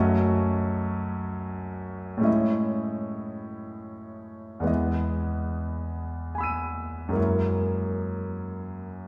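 Heard from further back in a wet recital hall with a 1.6-second reverb tail and lossy compression artefacts, this brief fragment of a longer impressionist classical piece features a clear, intimate grand piano with audible action noise, playing alone in a hazy, mysterious 6/8 at a rubato 46-54 BPM, spanning E2 to D#7 as it moves through F#m6, Amaj7#11, Emaj7 and F#9 over 9.1 seconds.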